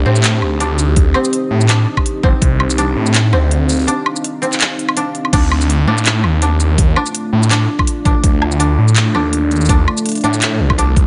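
Cinematic and heavy, this half-time drum and bass excerpt at 165 BPM sits in D phrygian, moving from Cm to Dm at 5.3 seconds, with a swirling, thick detuned saw bass run through a phaser up front beneath a deep, moody pad of sustained chords that pumps under sidechain and carries chorus and reverb. A mellow, woody koto plays dry arpeggios fed into a delay, while a layered electronic kit with crisp hats, handclaps, shaker, woodblock and crash drives the groove. An overdriven, knocking electronic kick hits from 1.0 to 2.5 seconds, stays out through the break from 3.9 seconds, and returns at 5.3 seconds, all within a light digital ambience.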